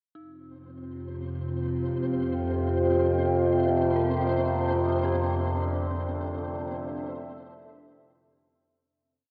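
In a straight 4/4 pulse, this cavernous dark ambient drone piece places a resonant, overtone-sweeping sawtooth-and-sine drone up front beneath a deep, moody detuned pad whose slowly shifting chords move from F5 to Dm7 at 4.5 s, while a grainy, flickering granular texture holding a high note fades in alongside an eerie, inharmonic FM bell that sits in the background playing arpeggios in three slow loops of unequal length drifting against each other, the mix steeped in huge reverb and worn, warbling cassette-tape pitch drift until it fades out from 4.5 s to 8.9 s.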